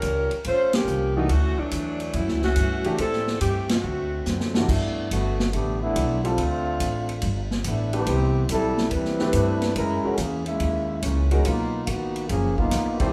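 A swung 4/4 groove from a vintage drum kit with a punchy kick and a growly, plucked upright bass drives this brassy big band swing excerpt, punctuated by band accents. A mellow, tight saxophone section carries the melody up front until 4.5 seconds while a woody upright piano with long sustain accompanies from 1.2 seconds. After a drum fill, a smooth-topped trombone section with light vibrato takes a solo from 4.7 seconds to the end. The band plays live together in one room, wrapped in a wet large-studio reverb.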